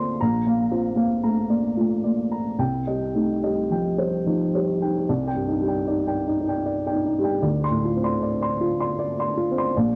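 Set in 3/4 and played rubato at roughly 71-79 BPM, this neoclassical minimalist piano piece moves with a melancholic, reflective air in C dorian, tuned slightly low to A4 = 439 Hz. A dark upright piano plays solo from 0.0 to 10.0 s, spanning Bb1 to C6, its woody, boxy tone sitting up front and touched by an analog delay. The harmony passes from Bb to Cm, then shifts at 5.1 s into a second passage built on Cmadd9 and Dm7. A wet studio reverb with a short decay surrounds the playing, while worn old cassette tape lends the recording a warbly pitch drift. The passage is cut from a longer piece.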